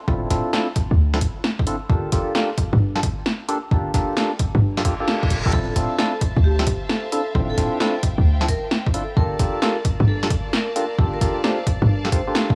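A swung, bouncy two-step garage groove of punchy, tape-warm kick and up-front analog drum-machine hi-hat and snare drives this moody, dry and gritty cut from a longer piece, with a tight, decaying 808-style bass and hollow, nasal organ stabs carrying chorus and tape echo over Dm9 and Gm9 throughout. At 4.9 seconds a reverse cymbal ushers in a ringing hard-mallet vibraphone melody with analog delay and a biting, sidechain-pumped violin section holding sustained chords with 12-bit sampler grit from 5.5 seconds, all under a layer of vinyl crackle.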